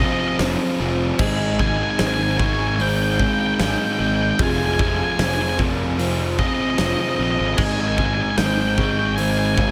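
A steady, straight 4/4 pulse at 75 BPM carries this cinematic, soaring post-rock passage in Ab major, cut from a longer piece. A huge, natural-sounding arena drum kit comes in at 0.4 seconds with a fat snare, punchy kick, hi-hat and crash, while a round, overdriven fuzz bass played with the fingers holds the low end. Two bright, picked crunchy guitars play riffs in the background, one pitched an octave above the other, beneath a dark octave-fuzz lead guitar that carries the melody through distortion and tape echo. A ringing, metallic vibraphone struck with medium hard mallets and given a medium motor vibrato spins arpeggios through tape echo, and a very quiet, twangy pedal steel guitar adds clean, compressed sustained chords with slide and volume swells. The harmony alternates between Fm7 and Abmaj7, and a small room reverb gives the mix its sense of space.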